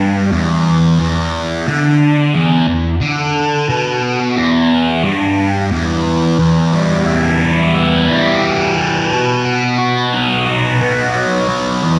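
Mysterious and trippy, this short rock fragment, cut from a longer piece, features a lone electric guitar with a thick, bright fuzz tone, picked and double-tracked up front, colored by distortion, phaser and tape echo as it ranges from E2 to F#4. A lush hall reverb soaks the mix in a dreamy haze, with the harmony resting on E minor before shifting to B at 9.1 seconds.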